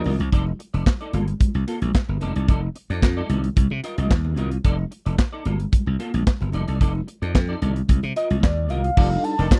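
Early-eighties boogie funk with a funky, slick mood, moving in a straight 4/4 groove over a dry, close studio sound with little reverb. An up-front acoustic drum kit carries the music with tight kick, medium-tuned snare, handclaps, hi-hat and bright crash cymbal, while a growly, bright slap bass sits just as forward in the mix. A dark, clean semi-hollow electric guitar plays a fingered riff treated with ensemble chorus, and hard-hand congas sound very quiet and distant, as if in a large room. The chords cycle through F6, Gm9 and Cm7 before landing on F13 at 9.0 seconds, where a round, brassy synth with chorus and filter sweep returns after a brief touch at the very start. A velvety, smooth synth lead with chorus and slapback echo enters high at 8.2 seconds, and a warm pop-style horn section adds a short second line at 9.4 seconds in this fragment cut from a longer piece.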